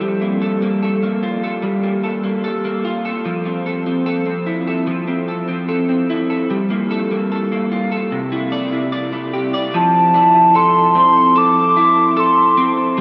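A floating, dreamy piece of dream pop in F major moves at a slow 74 BPM in a straight 4/4, cut from a longer work. An electric guitar through a small old amp plays picked arpeggios from the start, its slightly broken-up, compressed tone sitting up front and colored by analog chorus and analog delay. The chords drift from Gm9 to Fmaj7 and back to Gm9, then pass through Cadd9 before settling on Fmaj7 as a second section opens at 9.7 seconds. At that point a hollow, clarinet-like synth lead enters with a sustained, woody melody pitched high, between A5 and D6, its soft attack, vibrato and noise layer lending it a mellow voice, treated with chorus and analog delay. The whole mix is soaked in a huge ambient reverb with a long tail, giving the short passage a hazy, suspended atmosphere.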